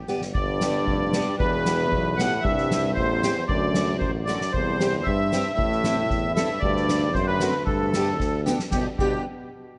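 A reedy, sweet accordion with light tremolo tuning carries the melody up front in this bouncy, festive alpine dance band excerpt in G major, moving at 115 BPM in a straight 2/4. A present tuba anchors the bass while a euphonium with light vibrato and analog delay plays a second line in classical style; a picked steel-string acoustic guitar with analog chorus sits in the background, and a soft-mallet drum kit with dark cymbals and a boomy kick adds fills at 0.1, 4.3 and 8.2 seconds. The whole band sits in a dreamy, plate-reverb-soaked mix as the chords move from G through Em, C and D to a closing Gadd9 and G.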